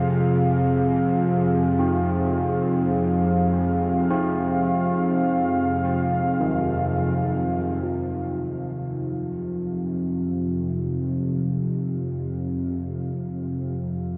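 A slow, straight 4/4 pulse at 52 BPM underpins this unsettling dark ambient drone in F minor, cut from a longer piece and resting on a single Fm chord. A tense, string-like bowed drone with ring modulation and vibrato sits low and up front beside a deep, moody analog pad thickened by chorus, while mellow carillon bells with tape echo arpeggiate from 1.8 s. From 7.8 s a filter sweep moves across the drone and a metallic bronze singing bowl rings softly in the background, all bathed in a huge, dark reverb.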